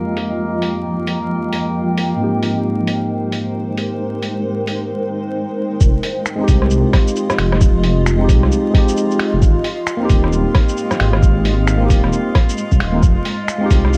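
A deep, detuned saw bass rumbles up front alongside a muffled, thumpy sampler kick from 5.8 seconds in this rainy, wistful future garage fragment, where a worn, slightly out-of-tune tine electric piano and a blurred granular cloud pad both pump and pass through filter sweeps alongside glassy, drifting harmonics, while gritty, pitched-down lo-fi finger snaps, hi-hat, rim clicks and shaker swing lightly over vinyl crackle and a touch of reverb as Fm7 and Abmaj7 alternate.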